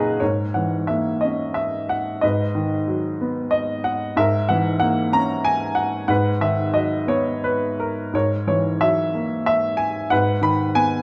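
Classical solo piano in a moody, bittersweet vein, this lyrical fragment of a longer piece moves in 3/4 at around 91 BPM with uneven, rubato phrasing. A clear, natural baby grand sits up front with short sustain, spanning F#2 to B5. It opens with a brief fill before cycling through F#13/G# and G#m7 colourings and settling on G#m at 10.1 seconds, all carried by a moderate recital-hall reverb.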